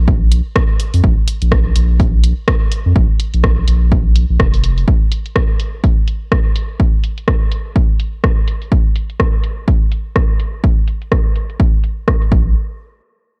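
A dark, dry production with a snug, close feel opens this short cut from a longer minimal techno piece, moving at 125 BPM in 4/4 with a 58% swing on the sixteenths. The mood is hypnotic and quirky, tuned to A4 = 443 Hz. A saturated sub bass, deep and thick with a sine-like body, fast attack and sustained notes, sits up front between F1 and F2, pumping against the sidechain; it plays from the start until 4.8 seconds and returns briefly at 12.3 seconds. A punchy, tape-warm electronic kick enters at 0.1 seconds in a small room ambience, and a quieter house kit of low-pass-filtered hi-hats and rim clicks carries the groove in the background. A filter sweep runs across the drums for the whole passage, giving the beat a shifting character.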